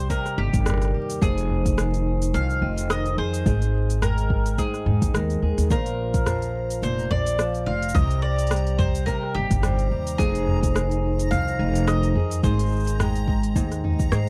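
A soft, tape-warmed electronic kick and an organic electronic kit of crisp hi-hat, rim click, shaker and toms set a 107 BPM groove in 4/4, with a gentle 56% swing on the sixteenths. The mood is delicate and autumnal, a folktronica excerpt cut from a longer piece, tuned to A4 = 442 Hz and moving through Cm7, Fm7, Ab and Bbadd9. Up front, a dark, thumpy pizzicato upright bass with gut strings anchors the low end, while a boxy, fingerpicked old ladder-braced acoustic guitar plays arpeggios beneath a picked, double-strung woody mandolin that carries the melody through tape echo until 13.0 s. A ringing, band-limited vintage vibraphone, played with hard mallets and the motor off, sits in the background as a second line, also through tape echo. At 6.4 s a dreamy, detuned backwards swelling texture with a granular, bright sheen and its own reverb drifts in high and faint behind the band. The overall sound is a dry, close 1970s-style studio recording dusted with vinyl crackle, with both drum parts re-recorded in a small room.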